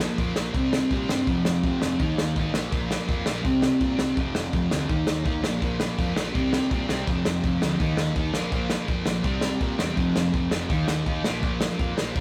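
From the first beat, a sludgy, double-tracked overdriven guitar riff cycles through Bb5, C5, F5 and Eb5 up front at a straight 165 BPM in this raw, angry punk rock clip cut from a longer piece, over a soft brushed acoustic kit with a punchy kick and medium-tuned snare, while a dark, round, fuzz-drenched picked bass sits in the background, all caught in a rough rehearsal-room recording with saturation and moderate studio reverb.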